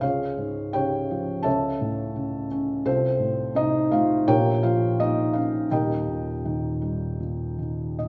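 Peaceful and calm, this brief classical excerpt for lyrical solo piano drifts in rubato 4/4 at roughly 72-87 BPM, as a felt-muted upright piano plays alone, its dark, intimate tone sitting up front with thick felt and audible action noise, moving through Db, A/C#, F/C, Bbm and Eb before a short fill at 7.6 seconds, all bathed in the wet reverb of a recital hall.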